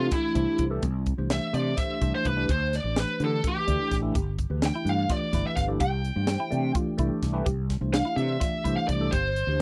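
A bluesy overdriven lead guitar, dark and distorted and sitting up front, carries the melody through this bright, soaring excerpt of electric jazz fusion in 7/8 at 253 BPM counted in eighths, over a tine electric piano with medium tremolo and phaser played through a combo amp. A round, mellow fretless bass with analog chorus anchors the low end, while a crisp, polished drum kit with a high-tuned snare and punchy kick drives the odd metre, moving through chords like Cadd9, Gadd9 and Fmaj9/C. From 4.2 seconds a clean, warm electric guitar with analog chorus adds stabs, all captured in a dry, close 1970s-style studio sound.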